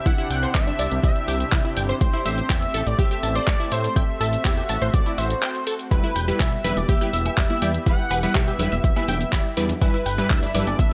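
Emotional and bittersweet, this progressive house excerpt opens with a thick, nasal sawtooth unison lead carrying the melody with vibrato and tape echo over a lush, chorused unison pad and a bright, wave-folded unison pluck playing arpeggios. A deep electronic kick sits up front beside a deep house kit of handclaps and hi-hats, both given overdrive, while a fat, detuned analog bass pumps beneath the Cadd9 and Am7 chords. After a brief break at 5.4 seconds, a punchy supersaw stab and ringing woodblock and congas enter at 5.9 seconds as the harmony turns to Em, set in a digital ambience.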